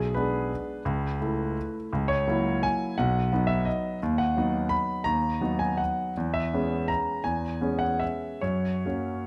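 A solo grand piano opens this brief classical waltz fragment in 3/4, its rubato phrasing giving the lilt an elegant, bittersweet cast. The single instrument spans a deep bass B up to the upper treble over roughly 9.3 seconds, moving from a diminished colour through A/C# and F#7/C# before settling onto B and B/D#. A C#m7/E chord carries the phrase toward an F# harmony at 8.4 seconds, where the passage is cut off mid-piece. The piano tone is clear and polished, with long sustain and audible action noise that lend an intimate presence. Close, detailed microphones keep the instrument up front, while a moderate recital hall reverb adds a gentle sense of space around it.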